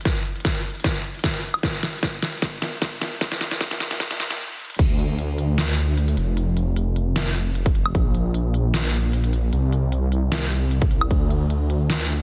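A thick, detuned saw bass with chorus and sidechain pumping surges in at the drop at 4.8 seconds, carrying this playful, bright future bass excerpt in a half-time swing, after a build-up where a punchy, tape-warm electronic kick and an up-front dubstep kit of deep snare, crisp hats, ride, crash and woodblock fill under a filter sweep before a brief stop, all set in light digital ambience with a dense, heavily limited modern master.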